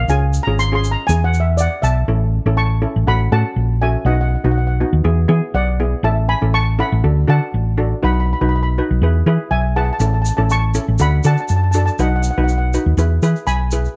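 A dark, lightly reverberant production carries this bouncy, carefree calypso cut from a longer piece, moving at 121 BPM in 4/4 with a gentle sixteenth-note swing in A major. A mellow lead steel pan, struck with soft rubber sticks, sings the melody with a shimmering tone, a slapback echo and a plate reverb. Beneath it, a second, brighter steel pan on hard rubber sticks fills in the harmony with a metallic edge and its own plate reverb. The hollow-body electric bass sits up front, round and punchy with an amped, electric tone, and it is the loudest part in the mix. A grainy, vintage-sounding tube shaker ticks along from 0.1 to 2.0 seconds, drops out, and returns at 10.0 seconds, while the chords cycle through a sunny progression built around A, D, B and E.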